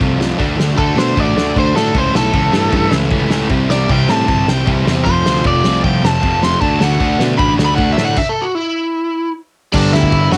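Punk rock, energetic and upbeat, cut from a longer piece with a raw, dry home-cassette sound: a loose indie drum kit with a fat snare and dark cymbals plays alongside a growly picked electric bass, two sludgy distorted guitars sit back in the mix playing the riff, and a double-tracked, hollow-bodied semi-hollow guitar adds a very quiet riff layer. From 0.8 seconds, a compressed overdriven lead guitar plays a bright, up-front solo melody with a tape-worn edge over D, A, C, F and D changes. The lead guitar stops from 8.2 to 9.7 seconds over an unchorded stretch before the music lands on G.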